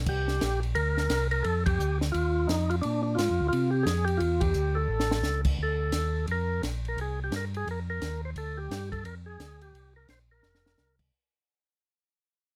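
Swinging in 4/4 at 174 BPM, this soulful, bluesy soul jazz organ trio pairs a round, dark, lightly overdriven tonewheel organ bass with chorus vibrato and slow rotary speaker under a clean, percussive tonewheel organ melody full of key click, both up front, while a dry compact cocktail drum kit with dark cymbals, a high-tuned snare and a punchy kick plays fills around 4.9 and 10.4 seconds; the band hits accents at 1.6 and 4.4 seconds, and a fade-out begins at 5.6 seconds, all in a light reverb.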